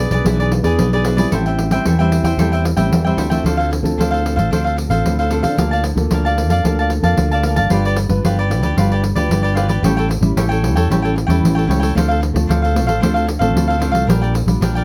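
Samba and choro at 113 BPM with a nostalgic, bittersweet mood, this excerpt moves from A minor into D minor at 3.5 s, with a bright, crisp, picked cavaquinho and a thumb-plucked classical nylon-string guitar with fresh strings sharing the accompaniment, a growly, amped, up-front fretless electric bass with subtle chorus holding down the low end, and a jingly, close, dry pandeiro entering at 0.1 s, in a moderate studio reverb.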